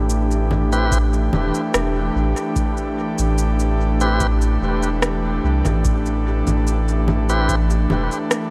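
A straight 4/4 pulse at 73 BPM carries this meditative, hazy ambient dub fragment in A minor. An airy, breathy pad with chorus sustains an Am7 chord up front over a round, soft sub bass, while an overdriven electronic shaker, congas and rim click with dub echo tick along. Lightly overdriven tonewheel organ stabs with vibrato, key click and dub echo enter at 0.7 s, and a deep, overdriven electronic kick joins in the background at 0.9 s, all set within light reverb and digital ambience.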